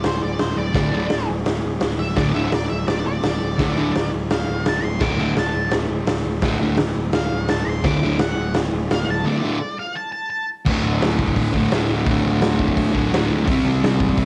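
A double-tracked fuzz guitar riff sits up front in this swaggering, rowdy garage rock excerpt at 170 BPM in a straight 4/4, over overdriven picked bass and a punchy, up-front drum kit with a medium-tuned snare, crash, hi-hat and a rolled-off top carrying a cassette tape character. A dark octave-fuzz lead guitar takes a solo from the start, with a break at 9.3 seconds, and falls silent at 10.5 seconds as the band moves into a new section at 10.7 seconds. The home cassette recording is dry and raw, with the harmony moving from D5 to C5 near the end.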